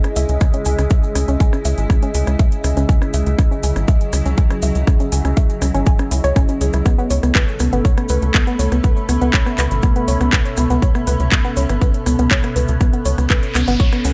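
Melodic techno at 121 BPM in C# minor, this dark, melancholic excerpt from a longer piece sits on a C#m chord before shifting to Aadd9 at 6.9 seconds. An evolving wavetable pad holds sustained, morphing chords through ensemble chorus, phaser and reverb, while a warbling, nostalgic tape-like pad floats higher with lo-fi, detuned vintage colour. A woody, wave-folded pluck spins mellow arpeggios through chorus and tape echo, and a tight sawtooth sequencer bass drives underneath from 0.2 seconds, up front and punchy. The punchy, up-front electronic kick enters at 0.4 seconds over a house kit of handclaps, metallic hi-hats and rim clicks, with a grainy cabasa in the background and sidechain pumping breathing through the pads, pluck, bass and hats. The production is dark and warm, and an electronic noise sweep enters at 13.4 seconds to close the passage.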